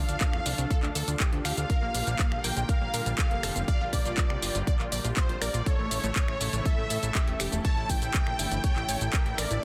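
A dense, heavily limited modern master with digital ambience frames this dreamy, emotional progressive house excerpt at 121 BPM in 4/4, moving through Dm, Bb6 and A. A thick, nasal, warbling sawtooth unison lead with vibrato carries the melody, joined very quietly by a smooth chamber violin section playing a second line, while a lush chorused pad with vintage 12-bit sampler grit sustains chords in the background and a bright, detuned pluck runs phased, tape-colored arpeggios with delay. Underneath, a funky, saturated analog bass and a house kit of finger snaps, handclaps, shaker and warm hi-hats pump with sidechain against a punchy, up-front electronic kick that enters at 0.2 s.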